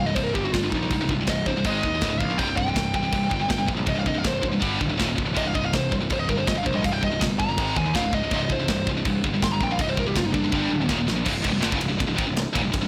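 A dark, distorted lead guitar solo opens this aggressive heavy metal passage over a double-tracked, high-gain rhythm guitar riff and a growly fuzz bass, with a tight metal drum kit of bright cymbals, snare, toms and a clipped kick up front, a drum fill from 10.5 to 11.3 seconds, and the solo giving way to the riff, bass and drums in a blown-out, overdriven mix with light reverb.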